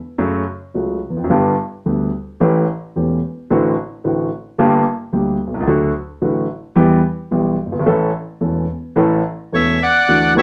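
Passionate and elegant, this rubato tango excerpt at 109 BPM in 4/4 sets a dark, mellow concert grand piano up front with deep bass, carrying the accompaniment through F#m, G, A7 and on to A in a studio reverb, before a reedy bandoneon enters at 9.5 seconds to take the melody between C#5 and F#5 until the cut at 10.4 seconds.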